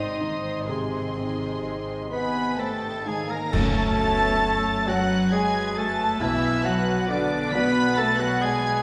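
In a rubato 6/8, this sorrowful, longing film-score excerpt sets dark, close sul tasto violins singing the melody over a second violin line and a mellow clarinet, backed by intimate piano, floating violas, sustained French horn chords, ringing harp arpeggios, and woody double basses with smooth cellos beneath, while bright cymbal swells, clash cymbals and bass drum enter at 0.7 s, a clear oboe and hollow flutes join at 2.1 s, and hard-mallet timpani strike a band accent at 3.5 s, all bathed in a recital-hall reverb.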